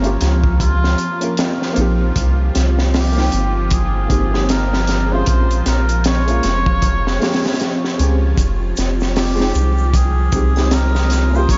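Trip hop in F minor at 77 BPM, this melancholic, brooding excerpt moves with a swung sixteenth-note feel over a Gm7b5, Cm7, Bbm7 and Fm7 progression. A cup-muted trumpet carries the veiled, vibrato-laden melody in a classical style, its soft attack roughened by vintage 12-bit sampler grit and trailed by dub echo. A felt-muted upright piano accompanies with an intimate, mellow tone and short sustain, shimmering with tremolo and tape echo, while a string machine in the background holds full, slow-attack cello chords coloured by phaser, ensemble chorus and the same sampler grit. Up front, a round, deep sub bass and a crunchy, saturated breakbeat kit with a tight kick and high-tuned snare anchor the groove. At 8.4 s a distant egg shaker and triangle join far back in a large room, and the whole dreamy mix is soaked in a huge ambient reverb with a dark, rolled-off top.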